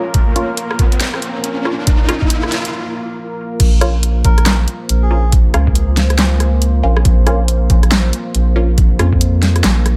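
Heavy and meditative, this deep dubstep excerpt moves at 139 BPM in Bb minor, with a swung, half-time feel over a Bb minor chord. It opens on a build-up where a moody, detuned sawtooth pad with chorus and reverb holds sustained chords, a muted, nasal chord stab with phaser and dub echo punches through, and an electronic riser climbs until 2.7 seconds before a brief break. The drums run almost throughout: a gritty, thumpy, pitched-down kick sits up front beside an overdriven, layered kit with a huge snare, handclaps, rim clicks, hi-hats and crash cymbals. At the drop at 3.6 seconds, a soft, round sub bass with a fast attack enters up front, anchoring the low end. A reedy, breathy melodica with dub echo briefly surfaces in the background from 4.2 seconds, all within a digital ambience.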